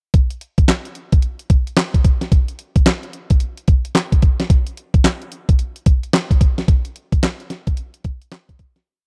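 Slick and bouncy, this short R&B piece runs as a single verse built entirely on a clean 12-bit digital drum machine in 4/4. The hard-swung beat has a sampler-style electronic character, with a thumpy kick, a fat snare layered with handclaps, and hi-hat filling out the pattern. Its tone is tape-warm, and the kit was re-recorded in a small room, then placed up front in the mix. The overall sound is dry and close, with little reverb, in the manner of a 1970s-style studio recording. The drums play from 0.1 seconds, and the piece fades out from 6.7 seconds to its end at 8.9 seconds.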